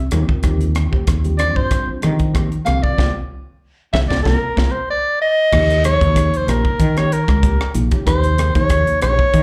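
A lightly swung sixteenth-note groove at 94 BPM in 4/4 drives this slice of electric jazz fusion, soaring and slick in mood and heard live through a club's PA. The crisp, gritty drum kit sits up front with a high-tuned snare, punchy kick, rim clicks, hi-hat and crash, while a growly fretless bass with a woody, hollow-body tone anchors the low end. Over them a breathy soprano saxophone carries the melody with light vibrato and a soft, whispered attack, its intimate tone set in plate reverb and slapback echo. In the background a mellow tine electric piano plays accompaniment with subtle chorus and its own slapback, and a dark, compressed electric guitar adds very quiet fingered stabs. The band hits a shared accent from 3.0 to 5.5 seconds, after which the harmony settles into Eb mixolydian over an Eb9 chord.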